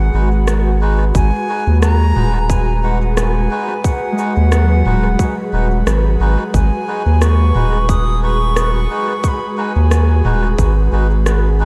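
A lightly swung 89 BPM groove in 4/4 anchors this spacious, meditative ambient dub piece in G# minor, resting on a single G#m7 chord. A tight, overdriven electronic kick enters at 1.1 s beside an overdriven organic electronic kit of rim click, shaker and toms soaked in dub echo, while a deep, round analog bass with tube saturation sits up front. Above them a bright wooden flute carries the melody through dub echo, a Celtic harp plays fingerpicked arpeggios in the background until 8.5 s, and reedy, nasal melodica stabs, also echoed, punctuate a soft, detuned pad thickened by chorus, before a faint wind-like tuned noise texture drifts in at 7.6 s, all inside a dreamy mix bathed in long cathedral reverb.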